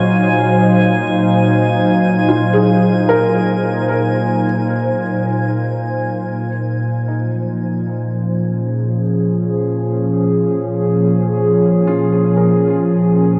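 A warbly, tape-like pad anchors this spacious, reflective ambient passage in free time and Bb minor, holding sustained chords up front with a detuned, nostalgic lo-fi glow from its chorus and built-in reverb. Alongside it, a felt-muted upright piano plays soft, intimate arpeggios in the background, its short-sustain tone trailed by a diffuse ambient delay. A drifting glass-harmonics texture hovers high above on a single glassy tone, calm and sine-pure, until it falls away at 6.3 seconds. At that point the harmony shifts from Ab13/Bb to Bbm9, and the piano fades in more fully through to 13.4 seconds. The whole passage sits in a huge, wet reverb with a cassette-tape character, and it is cut from a longer piece.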